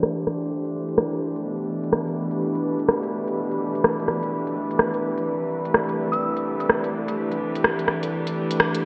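Future garage at 126 BPM in 4/4 with a 16th-note swing, carrying a nocturnal, rainy mood through a lush hall reverb, a filter sweep and a bright 1980s-style digital sheen in this short cut from a longer piece. Up-front chamber strings hold earthy, lightly vibrato chords moving from Am7 through G/B to C, while an organic electronic kit ticks out smooth hi-hats and rim clicks, and a barely audible downlifter slips past near the start. At 6.1 seconds a pure FM synth bell rings a brief high E6 note, warbling through chorus, phaser and delay.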